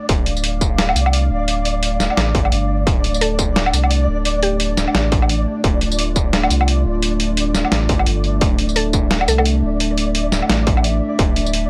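Tense and spacious, this half-time drum and bass passage sets a distorted, up-front electronic kick and a gritty, pitched-down sampler-style kit of hi-hat, snare, tambourine and woodblock over a thick saturated sub bass, while a moody detuned analog pad with subtle chorus and sidechain pumping and a flickering granular texture hold steady alongside a woody mallet-like synth pluck that surfaces briefly at 3.2 and 8.8 seconds, all in a dry, hardware-rough mix.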